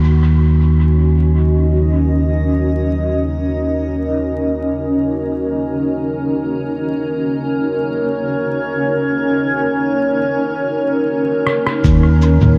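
A cloudy, evolving granular pad holds sustained chords over a punchy, up-front fingered electric bass in this hazy, spacious ambient dub excerpt, set in a dreamy mix soaked in huge reverb and vinyl crackle, until a muffled, pitched-down fill of electronic rim click, cabasa and congas with dub echo enters at 11.5 seconds and a thumpy electronic kick drum lands at 11.8 seconds as the harmony shifts.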